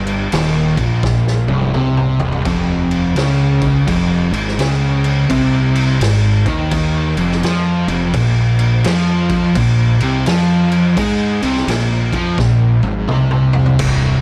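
Brooding and sludgy, this short cut from a longer stoner and doom metal piece moves at 85 BPM in 4/4 with a swung eighth-note feel, working through Cm, F5 and Bb5. A double-tracked, distorted fuzz guitar sits up front with a dark picked riff, while a growly, overdriven fingered electric bass adds punch underneath. A raw garage drum kit with a gritty, saturated tone, a medium-tuned snare and a rolled-off top drives crash, kick, snare and toms, with fills at 1.0 and 12.4 seconds, all in a dry, shadowy production.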